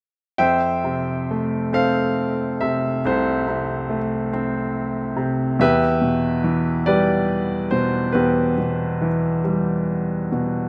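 Close, detailed microphones and light reverb put a clear baby grand piano up front, its natural tone carrying long sustain and audible action noise that make the sound feel intimate. In this brief classical excerpt, the lyrical solo piano unfolds in a tender, rubato 6/8 from 0.4 to 10.7 seconds, spanning C2 to G5. It moves from Fmaj7 to Em7 at 5.6 seconds.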